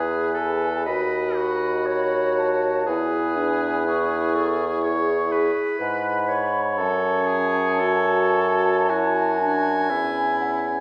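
From its opening moment, five wind instruments sound together in a slow, romantic classical movement for wind quintet at 60 BPM in 4/4, with a rubato feel and a warm, lyrical mood. A hollow, pure-toned silver concert flute carries the melody high above with tongued notes and vibrato, while a clear oboe sings a second line beneath it, also with vibrato. A mellow clarinet with a smooth top and a French horn with light vibrato and a present tone fill in the accompaniment. The bassoon anchors the bass up front, its soft attack and light vibrato giving the low register a gentle weight. The harmony moves from E to B/D#, returns to E at 2.9 seconds, and shifts to F#m at 6.8 seconds, and the whole ensemble sits in a recital hall reverb with a 1.4-second decay that lends the close-miked flute and oboe a soft halo. This is a fragment of a longer piece, ending at 10.8 seconds.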